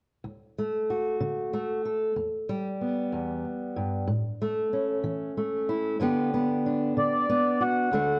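Warm and nostalgic, this short folk excerpt in D major sways in 6/8 at 62 BPM, with an up-front fingerpicked steel-string acoustic guitar carrying the accompaniment through D, Em, A and G from 0.2 seconds onward, joined at 7.0 seconds by a reedy, mellow accordion with slow beating on the melody, all tuned slightly flat to A4 = 437 Hz and bathed in moderate large-studio reverb and the worn, warbly pitch drift of old cassette tape.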